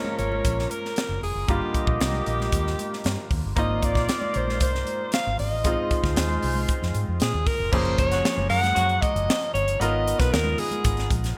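Glossy and urban, this short cut from a longer piece is polished 1980s jazz-funk pop at 115 BPM in a straight 4/4, set in a lush hall reverb with bright digital sheen. A breathy, up-front alto saxophone carries the melody with vibrato and a punchy yet smooth top, while a dark, vintage horn section plays a second line with light vibrato and a touch of delay until about 9.0 seconds. A brilliant baby grand piano, intimate enough that its action noise is audible, supplies accompaniment through a lush chorus, and very quiet congas with soft hands and thin skins add bright percussion. From 0.2 seconds a round, foam-muted fingered electric bass and a crisp, airy fusion drum kit join, the kit marked by a high-tuned snare, tight kick, hi-hat and dark crash cymbals. The harmony moves through jazzy chords such as Gbmaj9, Ab69 and a rootless Bb9sus4 before a second section at 7.7 seconds returns to Gbmaj9 and turns to Abm6.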